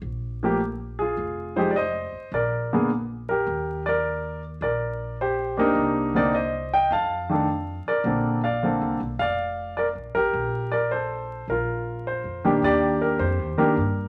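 Jazz piano trio in a playful, warm mood, this short fragment of a longer piece moves in 4/4 with a swung eighth-note feel. A pizzicato upright bass opens at 0.0 seconds, its gut strings giving a woody, thumpy low end that sits beneath the piano. The baby grand carries the melody from 0.4 seconds, sounding intimate and up front, with a natural, short-sustained tone and audible action noise. The harmony starts on a rootless Gm7 and moves through Fm7, Eb6, Cm9 and F6 to a Bbmaj9, then turns to Ebmaj7 as a new section begins at 12.6 seconds. A wet studio reverb and a layer of vinyl crackle give the recording a vintage, lived-in atmosphere.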